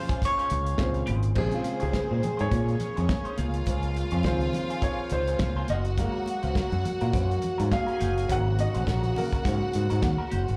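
Disco with a danceable, driving swing, caught live through a club PA, where a round mandolin melody sounds only until 1.1 s before a dark baby grand piano takes a solo from 1.4 s over a smooth symphonic string line, mellow French horn chords, a twangy wah-tinged clean electric guitar, high-tuned congas, a damped 70s drum kit with a tight kick, and an overdriven, punchy fingered bass, all moving through Bbm9, Dbmaj7, Gbmaj7 and Ab9sus4.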